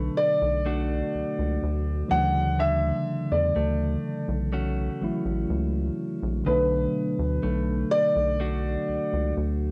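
A slow, straight 4/4 pulse at 62 BPM carries this late-night, sensual R&B fragment in B minor, moving from Bm7 to Dmaj7 and back to Bm7. A boxy, up-front concert grand with long sustain sings the melody until 9.3 s, while a tine electric piano with analog chorus and cassette-tape color plays accompaniment, and a direct-recorded, compressed clean electric guitar picks arpeggios. Underneath, a rubbery, hollow square-wave bass with a dark filter pluck sits forward in a dry, intimate home cassette recording.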